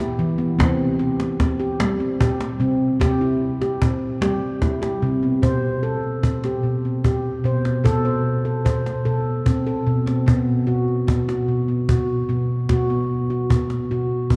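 A ringing, mellow nitrided-steel handpan sits up front, played with soft fingertips in meditative arpeggios from B2 to C5, while a woody, band-limited cajon struck with hard hands adds faint snares beneath it, and the pair drift through a hypnotic world-meditative passage at 50 BPM in a straight 6/8, moving from Em and C to Am/B at 5.4 seconds and B5 at 10.3 seconds, all bathed in a dark church reverb in this fragment of a longer piece.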